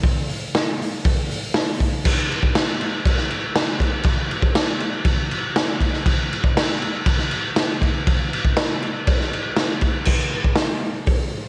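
A straight 4/4 rock beat at 120 BPM drives this raw, rowdy fragment cut from a longer piece, played by a lone acoustic garage drum kit of kick, snare, hi-hat and crash cymbal from 0.0 to 11.2 seconds. The kit sits up front with a gritty, saturated character, a punchy kick and a medium-tuned snare, its dark, rolled-off top set in a light reverb that suggests a bright stone room. The arrangement moves through a short opening, a longer middle passage from 2.1 seconds and a brief closing stretch from 10.1 seconds.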